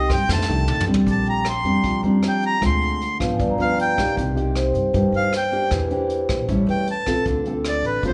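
A reedy, up-front accordion carries the melody as a solo throughout this sunny, sophisticated bossa nova fragment at 155 BPM in Bb major, over thumb-plucked classical nylon-string guitar and a woody pizzicato upright bass. A mellow soft-mallet vibraphone rings in from 0.1 s, and a vintage brush kit with a tight kick and medium-tuned snare enters at the same moment and plays a fill between 0.3 and 1.1 s. Chords such as Bb69, Dm7b5, G7 and Cm7 move through a moderate recital-hall reverb that gives the whole a rounded, muted top.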